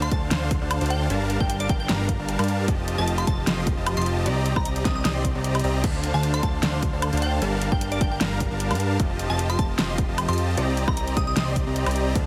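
This lush, dreamy future bass excerpt opens at once with huge, detuned supersaw chords, a fat sawtooth analog bass, a pop drum kit and a glassy wavetable pluck, with an electronic kick joining at 0.1 seconds. Set at 152 BPM in 4/4 with a half-time feel and a light 16th-note swing, it sits in C dorian and cycles through Dm7, Gm7, F7 and Cm7. The up-front supersaw riff is bright and unison-stacked, the thick bass carries a filter sweep, and both breathe with sidechain pumping. Overdrive gives the punchy kick and the kit's fat snare, warm hats, crash, ride and woodblock a gritty, small-room edge. Further back, the crystalline, nasal pluck melody sits high, colored by chorus, delay and its own sidechain pumping, and the whole mix has a dry, heavily compressed radio sound.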